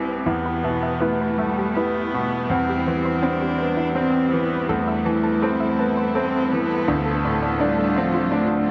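A bright, up-front concert grand piano carries the accompaniment of this short neoclassical fragment, its brilliant treble resting on a deep bass. Alongside it from the very start, a single bowed cello with vibrato sings a rich, focused second line softened by a diffuse ambient delay. At 0.3 seconds a warm chamber string section joins with smooth, even sustained chords, and a hollow, nasal square-wave pluck enters in the background with bouncy, detuned arpeggios shaded by chorus and delay, stopping at 8.4 seconds. The harmony moves gently through Em, C/E, Am/E and Dm in an unhurried, rubato 3/4 at around 82 BPM. A huge reverb with a 7.3-second tail and a cassette-tape character soaks the mix in a dreamy haze, leaving the mood intimate yet hopeful.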